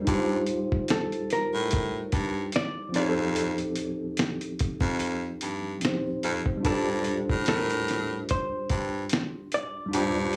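A worn, slightly out-of-tune tine electric piano, lightly overdriven and softened by a low-pass filter and plate reverb, opens this melancholic, nostalgic lo-fi hip hop excerpt at 73 BPM in G minor; at 0.1 s a raspy, growling baritone saxophone with vibrato takes the bass role up front, alongside a gritty, compressed sampler-style drum kit of thumpy kick, fat snare, hi-hat and finger snaps on swung 16ths, before a dark, clean hollow-body jazz guitar enters at 0.9 s with a picked melody through plate reverb and analog delay, while the harmony moves from Eb6/G through F9 to Gm11 at 6.6 s.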